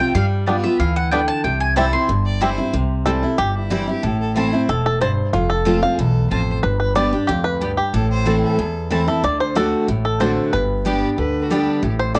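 A picked mandolin melody and a bright, full-bodied dreadnought guitar with audible finger squeak open this rustic, joyful bluegrass excerpt in C major at 185 BPM, joined within the first half second by a thumpy, dark, gut-strung upright bass and a twangy, percussive fingerpicked banjo, with a background mandolin adding woody stabs. The lead mandolin drops out at 2.2 seconds, and a clear, smooth fiddle with light vibrato slips in a quiet second line at 2.3 seconds. After a G7–C opening, the banjo takes a solo from 2.7 seconds over an Am–F–G–Am–D7–G progression, all caught in a small, lightly reverberant room on a home cassette recording.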